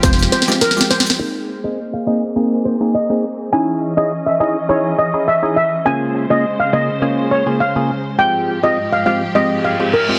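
Dancehall at 103 BPM in Ab major, bouncy and summery, where a shimmering steel pan carries the melody over hollow, wave-folded organ stabs and lush, vibrato-rich studio strings under a low-pass filter sweep, while a deep-kicked afro-pop drum kit with gritty, clipped snare and soft timbales and maracas drop out after the opening fill, a dark fingerpicked nylon-string guitar following shortly after, and an up-front reverse cymbal rises in at 9.6 seconds.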